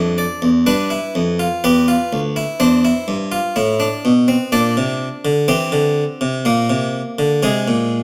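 A lone harpsichord carries this solemn baroque-style three-part fugue, its plucked, round tone on a single set of strings sitting close and up front, spanning D2 to D5. At a slow 62 BPM in 4/4 with a straight feel, the serious counterpoint moves through harmonies from Dm/F and G7 to C/E, G5 and a closing Bb7. Moderate stone-room reverb lends depth to the detailed, full-bodied sound of this 8-second fragment cut from a longer piece.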